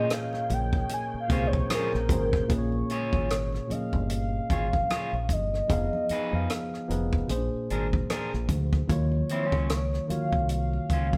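A mellow, horn-like synth lead with chorus and phaser opens this late-night, introspective neo-soul R&B excerpt at 75 BPM in Bb dorian, carrying the melody over a worn, slightly out-of-tune tine electric piano, a scooped electric guitar at the edge of break-up, a dark, round dub bass, a dry cocktail kit with a punchy kick up front, very quiet thick-skinned congas from 0.3 seconds, and a clicky tonewheel organ on fast rotary that sustains chords in the background until 2.5 seconds, all in a light-reverb room as the chords move from Bbm7 through Fm7b5 and Bb7 to Ebm9.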